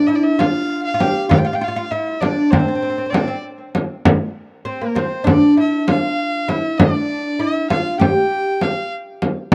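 A mellow, woody fretless oud carries the melody up front with a touch of tape echo while a distant, biting kamancheh bows an earthy second line above it with light vibrato and portamento, and a hard-handed frame drum enters at 0.4 s in this soulful, melancholic excerpt of Turkish makam ensemble music in 9/8 at 198 BPM (eighths), captured as a dry, close 1970s-style studio recording.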